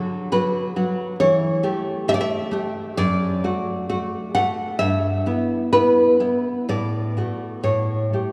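A fingerpicked nylon-string guitar plays alone and up front through this brief, tender romantic fragment in 2/4, its woody tone and old strings ringing into a wet church reverb as the rubato phrasing moves unevenly through B5, A7/E, D/F#, Em/G and D/A before arriving on A7 at 7.6 seconds.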